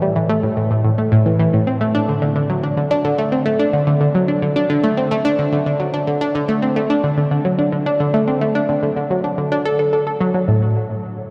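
A straight 4/4 pulse at 109 BPM carries this hypnotic, mysterious ambient passage, cut from a longer piece and tuned to A4 = 438 Hz. A lone analog pluck sits up front for the full 10.7 seconds, ranging from A2 to A4 with a round, nasal, detuned sawtooth tone, a noise layer and fast-attack notes that decay, coloured by chorus, phaser and analog delay. A cathedral reverb with a 5.3-second tail soaks the dreamy mix.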